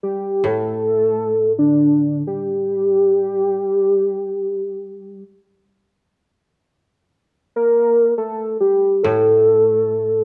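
Japanese traditional chamber music in free time, still and austere, where a velvety synth lead with chorus and tremolo sings the melody up front from the start, over a dry, woody koto played with fingerpicks that enters at 0.4 seconds, all set in a moderate recital hall reverb with a dark production in this short excerpt from a longer piece.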